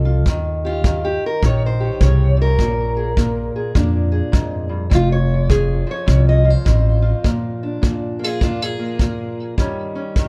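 Gritty and swaggering, this short excerpt of acoustic country blues moves at 103 BPM in 4/4 with a swung eighth-note feel. A fingerpicked steel-string parlour guitar carries the melody and takes the solo throughout, its dark, boxy tone sitting up front with a touch of tape echo. Pizzicato upright bass, woody and close, holds down the low end from the start until 7.1 seconds. An acoustic kick drum played with brushes comes in at 0.3 seconds, giving a punchy, natural thump from a studio room. The chords cycle through Eb7, Bb7 and F, and light reverb wraps the whole in a dark, warm production.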